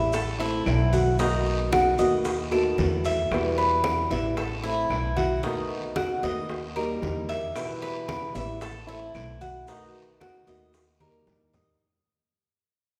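Bathed in the lush reverb of a church or concert hall, this danceable, warm stretch of Cuban son and guajira at 113 BPM in 4/4 puts a metallic, double-strung Cuban tres playing arpeggios up front beside a growly, thumpy pizzicato upright bass, with a fingerpicked flamenco guitar accompanying amid audible finger squeak, while ringing low-tuned congas, tight high-tuned bongos, a raspy guiro, distant woody claves and grainy maracas that drop out and return at 7.6 s fill out the percussion as the music settles into E harmonic minor and starts fading out at 3.3 s before a drum fill at 11.0 s.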